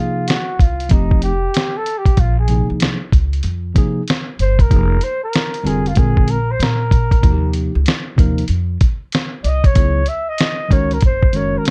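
A dry mix opens this cool, mellow jazz-hop cut from a longer piece at 95 BPM, with a 4/4 groove swung on the 16ths. A bright, clean tine electric piano sits up front with the lo-fi sampler-style drum kit, which arrives at 0.3 seconds with a thumpy kick, fat snare and hi-hat, compressed, muffled and pitched down with vintage 12-bit grit, while a woody pizzicato upright bass on gut strings joins at 0.6 seconds. Over chords moving from Cm11 through Fm9 and Eb69 to Gbadd9, a breathy flugelhorn solos throughout, distant and intimate, with a soft attack and light vibrato.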